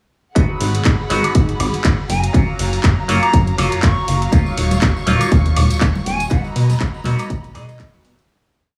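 A swung sixteenth-note groove in four drives this short, joyful piece of filtered disco house, built on a punchy electronic kick pounding four-on-the-floor up front and a tape-toned house kit of programmed hats, ride, woodblock and handclaps on the backbeat. Beneath it, a plucky analog bass with tube saturation jumps between octaves with a funky, fast-attack snap, while a twangy clav through a phaser holds close-voiced chords with syncopated pushes. A lush studio string section sustains a vibrato pad roughened by vintage 12-bit sampler grit, and the bass, clav and strings all breathe with sidechain pumping over a sunny G#m7, F#maj7, D#m9, Bmaj7 progression. At 2.1 seconds a breathy jazz flute enters with short, expressive phrases trailed by dub echo, and congas and tambourine join in the background at 4.3 seconds, played with hard hands and pumping too. The whole piece sits in a small room ambience with light reverb, and it begins fading out at 5.6 seconds.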